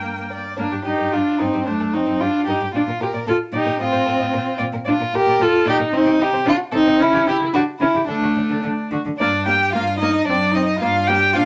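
A quick classical-period string quartet movement, cut from a longer piece, sounds dramatic and restless as a warm, expressive violin carries the melody with vibrato and portamento over a dark, sul tasto second violin line, a rich, focused viola accompaniment and a cello bass with a soft attack and airy bow, set in moderate studio reverb.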